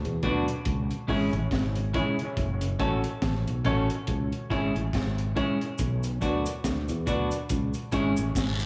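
Swung sixteenths in 4/4 drive this hypnotic, heavy dub reggae excerpt, where a crunchy, saturated breakbeat kit with a tight kick and high-tuned snare sits up front beside a growly fretless bass with analog chorus, while a clean, picked semi-hollow guitar and a dark, long-sustaining grand piano playing stabs both carry dub echo, a round tonewheel organ murmurs very quietly until 2.7 s, and cabasa and guiro join at 5.8 s, set in a small room with light reverb.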